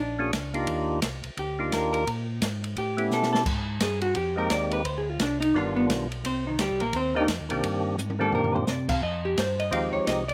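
Smoky and late-night, this fast soul jazz organ trio excerpt in C minor swings at 172 BPM, with an up-front, dark, clean hollow-body jazz guitar soloing throughout with slapback echo, a fat, percussive tonewheel organ carrying the melody through overdrive and slow rotary speaker, a round, mellow organ holding down the bass with key click, and an open acoustic drum kit with dark cymbals and a boomy kick adding fills at 3.1 and 8.0 seconds, all in a dry, roomless sound.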